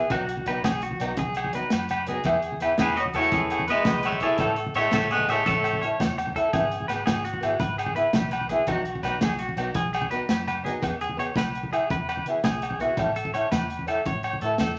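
A slightly broken-up, twangy electric guitar sits up front with the melody between 2.8 and 5.8 seconds, joined over the same stretch by a distant, roomy trombone carrying a bright second line below it. This is a sunny, joyful highlife guitar band groove in E major at 112 BPM in a straight 12/8, cut from a longer piece. Underneath, a dark, boxy fingerpicked archtop guitar holds down the accompaniment, while a compressed clean electric guitar plays twangy arpeggios through a tremolo effect. A round, foam-muted fingered bass and a vintage kit with a punchy kick, medium-tuned snare, hi-hat and a rolled-off top drive the rhythm, alongside ringing agogo bells in a large room and low-tuned, thick-skinned congas played with soft hands. The harmony moves through B, E, A and E/G#, then a new passage from 10.8 seconds cycles back through E and A, all set in a wet studio reverb.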